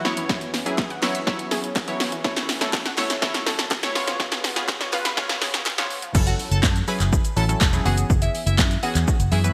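A bright, 1980s-style digital production with lush hall reverb frames this energetic, bittersweet dance-pop excerpt at 123 BPM, where an overdriven deep house drum kit with punchy kick and gated reverb drives a funky sawtooth polysynth comp, a warm detuned analog pad in the background, a lush unison pluck arpeggio and very quiet hollow group handclaps through a build-up with a filter sweep and drum fill, until the drop at 6.1 s brings in a dark, round, foam-muted fingered electric bass, followed shortly by a glassy, crystalline wavetable pluck melody with digital delay over chords moving from C#m7/F# to F#m7.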